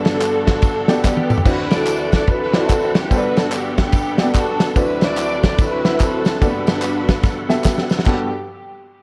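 Uptempo gospel at 145 BPM in G major with a swung, uplifting and hopeful feel, this short cut from a longer piece sets a lush, up-front bowed string section carrying the melody through tape echo over woody upright piano, a full tonewheel organ holding sustained chords in the background through slow rotary speaker and chorus vibrato, a fat-snared soul drum kit with fills at 1.0 and 7.2 seconds, and close, dry tambourine and group handclaps, all colored by a small room and the warbling pitch drift of worn cassette tape as Gmaj9 alternates with D13.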